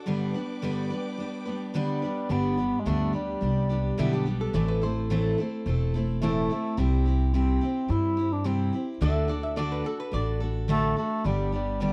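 Easygoing and down-home, this straight 4/4 country excerpt at 107 BPM in G major opens with a full-bodied picked acoustic guitar and a dark, lush bowed string section. A distant, roomy bass clarinet takes the melody from 1.8 s, and the strings drop out at 2.3 s as a growly pizzicato upright bass comes in. From 4.0 s a nasal, metallic lap resonator guitar adds a slide second line, all in a dry, close 1970s-style studio sound with light reverb.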